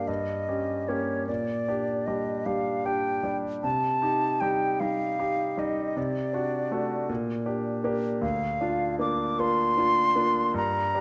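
A concert flute with a pure, vibrato-rich tone and crisp attack sings a solemn, melancholic melody over a bright grand piano with deep bass, both up front from the start of this 11-second romantic classical fragment in G minor, moving in a rubato 6/8 at 51 BPM through chords of Gdim, Gm/Bb, Cm and D7/C, then back to Gm/Bb before reaching Bb/D, with close, detailed sound in a moderate recital hall reverb.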